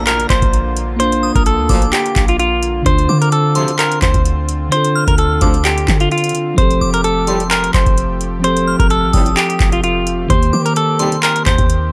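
Hip hop and trap in a half-time feel, this wistful yet triumphant excerpt from a longer piece sets a dark, hollow-body semi-hollow electric guitar melody up front, with vibrato and a low-pass filter, over a bell-like tine electric piano, a glassy FM synth bell with chorus and analog delay in the background, and soft, shimmering pipe organ string-celeste chords. A booming, overdriven analog drum machine with a deep kick, metallic hats and handclaps drives it alongside a boomy sine 808-style bass, while a mellow classical brass section adds stabs with analog delay from 1.7 seconds and a very quiet downlifter runs until 2.9 seconds. The dry, gritty hardware recording carries digital ambience as the chords move through Bb, Dm7, Fadd9 and Eb6.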